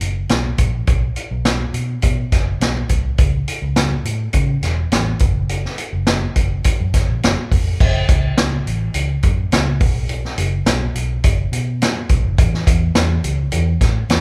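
A roomy, live-in-one-room studio sound with moderate reverb frames this driving, passionate uptempo 1960s-style soul excerpt at 104 BPM in a straight 4/4, where an up-front acoustic drum kit with dark cymbals, punchy kick, medium-tuned snare and rolled-off top runs alongside a round, foam-muted, amped fingered electric bass ranging from E1 to C#3, both playing throughout as the music moves into a new section at 7.8 seconds.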